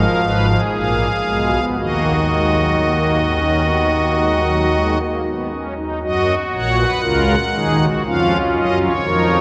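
A straight 4/4 pulse at 58 BPM carries this solemn yet driving baroque-style four-part fugue in Eb minor, cut from a longer piece. A solo pipe organ on strings celeste stops, soft and shimmering with a romantic voicing, sits up front and spans Ab1 to Gb5 as the harmony moves from Fdim through Bb5 to Ebm, arriving on an F7 chord lacking its third at 8.1 seconds. A long, wet cathedral reverb surrounds the organ throughout.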